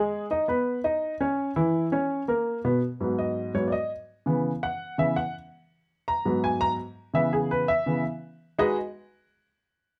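Jazz with a sultry, fiery mood, this fragment cut from a longer piece features a solo baby grand piano that sounds worn and intimate, with audible action noise and a short sustain, placed up front in a moderate studio reverb as it moves between G#m and C#m7 chords until 8.8 seconds.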